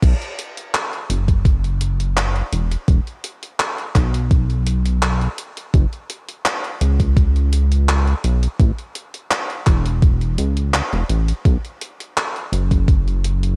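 Faded and dreamy, this short vaporwave excerpt moves at a straight 84 BPM in 4/4, and the whole passage stays within a single section. A chorused synth bass sits up front from the start, dark and glossy, blending pulse-wave and sawtooth tones with pulse-width modulation, a plucked filter and a fast attack that then sustains and evolves in a retro way. Alongside it, a thumpy, sampler-style electronic kick drum is also placed up front, carrying a tape-warm character from being re-recorded in a small room, and it drops out at 13.0 seconds. A quieter gated 80s digital drum machine adds crash cymbal, handclaps and hi-hat, its gated reverb giving those hits a clipped tail while sharing the same small-room, tape-aged coloring. Apart from that gated effect, the overall sound is fairly dry and close, and the bass and drum machine carry on to the cut at 13.6 seconds.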